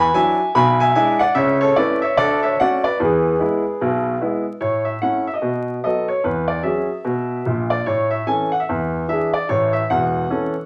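A bright concert grand piano sits up front, playing solo stride jazz with a swinging, exuberant bounce, its brilliant upper notes ringing over a deep bass register. The short clip, cut from a longer piece, moves from an opening passage into a new section at 4.6 seconds, running through a lively chain of chords before settling home on A. A club reverb gives the piano an open, roomy feel, and a layer of vinyl crackle lends the sound a vintage patina.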